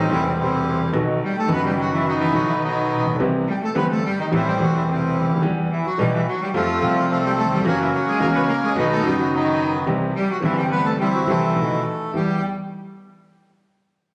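Caught on a phone in a studio room with a moderate stage reverb, this passionate, tense tango fragment moves at a rubato 107 BPM in E harmonic minor, with a reedy bandoneon carrying the melody up front beside an intimate, warm grand piano whose deep bass and audible action noise give it a vintage, smooth character, while a distant, biting cello adds an intense bowed second line with vibrato and a woody, thumpy pizzicato upright bass on gut strings sits dark in the background.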